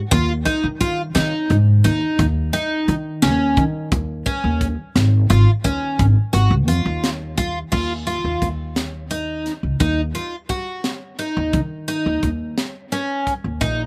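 Driving in a straight 11/8 at 173 BPM counted in eighths, this intricate progressive instrumental fragment in Eb minor pairs a shimmering, octave-doubled twelve-string acoustic guitar picking up-front arpeggios with a woody, pizzicato upright bass and a crisp, gritty fusion drum kit whose high-tuned snare, punchy kick, hi-hat and crash sit in a small, pumping room, all under little reverb as the harmony moves from Eb9sus4 to Ebsus2 at 7.7 seconds.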